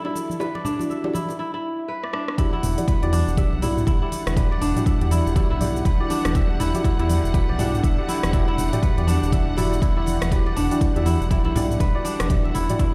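Heard through a big sound system in a bare stone room, this spiritual, driving afro house passage at 121 BPM in E minor pairs fingerpicked, ringing kora arpeggios with smooth, bowed string chords and soft, detuned chord stabs over an electronic kit with crisp hats, bright congas and low-tuned bongos, until a brief background swell leads into the drop at 2.4 seconds, where an overdriven, up-front kick lands and a round, dark analog bass follows moments later, with sidechain pumping on the strings, kora, stabs and bass.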